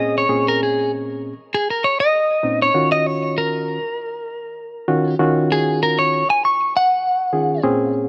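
A brooding, mournful blues fragment, cut from a longer piece, moves at an unhurried pace in four with a light swing on the sixteenths. A clean electric guitar carries the melody, its picked notes compressed and warm as they sit up front in the upper register. Beneath it, a barky reed electric piano plays the accompaniment in a lower range, its bright, reedy tone lightly overdriven and heard through built-in speakers. The harmony moves from Bbm7 to Ebm7 at 2.7 seconds, and the guitar falls silent at 7.6 seconds while the piano continues until 8.1 seconds. A light reverb gives the pair a modest sense of space.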